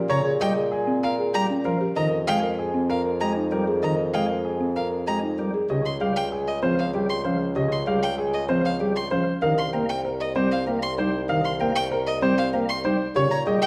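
In a dark, warm recital-hall acoustic, this hypnotic yet bright minimalist classical excerpt pulses at 193 BPM in 6/4, with a clear grand piano carrying the melody over woody, buzzing soft-mallet marimba arpeggios and rich, vibrato-laden violin arpeggios, while a chamber organ's sparkling flute stops with light chiff fill in the accompaniment and a mellow solo bassoon supplies the bass through chords moving from Bbm7 to Dbmaj7 and Cm7.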